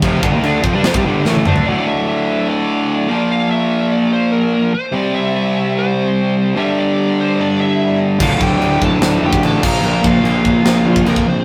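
Heavy metal in D minor at 147 BPM, relentless and aggressive, where an up-front, bright, overdriven rhythm guitar riffs throughout, while a very quiet, compressed second distorted guitar, a growly fuzz fingered bass and a tight, polished metal drum kit with bright china and crash cymbals drop out after a drum fill from 1.3 seconds and return at 8.2 seconds, as a smooth overdriven lead guitar carries the melody and a faint high-gain lead adds a second line from 7.4 seconds, the whole captured as a rough rehearsal-room recording with light reverb.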